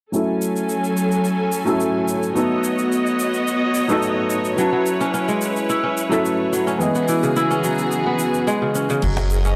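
A felt-muted upright piano anchors this meditative organic downtempo excerpt, its soft, mellow tone carrying audible action noise and a short sustain, with sidechain pumping, a low-pass filter sweep and analog delay shaping its accompaniment. Alongside it, a rich symphonic string section holds smooth, bowed chords with light vibrato, roughened by vintage 12-bit sampler grit and given the same pumping and filter sweep. An overdriven electronic shaker and crash cymbal tick along quietly at 108 BPM in 4/4, while the harmony moves through F#m7, B7, A6 and Emaj7 in F# dorian. At 4.6 seconds a crisp, ringing kora enters with fingerpicked arpeggios through analog delay. Near the end, a deep, round analog bass lands on F# at 9.0 seconds alongside a faint electronic kick, followed by a woody cajon hit and a twinkling granular shimmer in the background, all set in a dry, gritty recording with light studio reverb.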